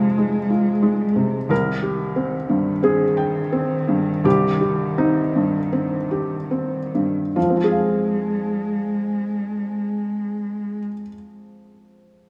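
Melancholic and reflective, this neoclassical piano-and-strings piece, cut from a longer work, moves in a rubato 4/4 at 68-92 BPM in F minor, slowing from 0.2 to 7.4 seconds over Fm and Cm harmony, as a mellow, intimate felt-muted upright piano with audible action noise and short sustain plays the accompaniment up front until 12.3 seconds while a single bowed cello sings a rich, expressive second line with vibrato and portamento until 10.8 seconds, all set in a lush hall reverb within a rough home demo mix.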